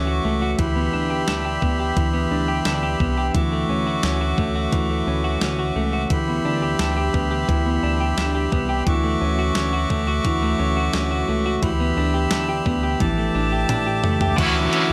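A reedy accordion holds airy sustained chords over dark, clean arpeggios from a semi-hollow electric guitar with subtle chorus and analog delay, while a glossy pulse-wave synth bass with tube saturation sits underneath. At 0.6 seconds a crisp 8-bit drum machine enters with a thumpy kick and fat snare, carrying this floating, ethereal dream pop at 87 BPM in D major as the harmony alternates between Dmaj9 and Cmaj7/D before an A7sus4 chord arrives with a drum fill at 13.0 seconds. The dry, gritty recording ends as a bright overdriven guitar with harmonic tremolo cuts in at 14.4 seconds, just before this cut from a longer piece stops.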